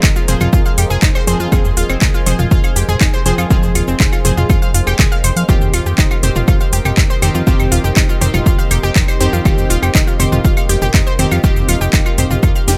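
Melodic techno at 121 BPM in F minor, cinematic and hypnotic, this excerpt moves from Fm to Cm as a punchy, overdriven electronic kick sits up front with an overdriven house kit of cracking snare, metallic hats, claves, handclaps, shaker and toms, while a fat, saturated analog bass, warbling vintage plucks with tape echo and brassy phased synth stabs with a cassette tape tint join two dark, slow-attack pads (one evolving, one with a moving notch and built-in reverb) that sit in the background, all the melodic parts pumping against the kick.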